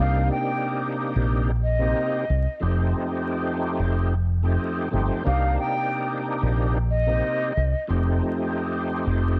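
A round, punchy fingered electric bass sits up front, its dark tube-saturated tone anchoring this moody, tough boom-bap hip-hop excerpt at 91 BPM in C dorian, swinging lightly over alternating Cm7 and F7 chords. A thick, gritty tonewheel organ with key click, chorus vibrato and slow rotary speaker fills out the harmony, while a breathy, hollow silver flute carries the melody with vibrato and a crisp attack until 7.9 seconds. Cassette tape colours the flute and organ, and the whole home cassette recording carries vinyl crackle and a light reverb.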